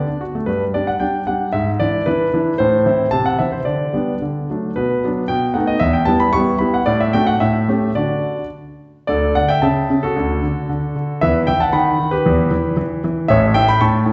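Heard from further back in a reverberant recital hall with its highs rolled off, this elegant, graceful classical-period piano sonatina passage in 2/4 moves at 105-119 BPM with a rubato feel, as a clear, intimate solo grand piano with audible action noise spans A1 to C#6, shifting from G major to D major at 4.8 seconds and opening a new section at 9.1 seconds before the cut at 14.1 seconds.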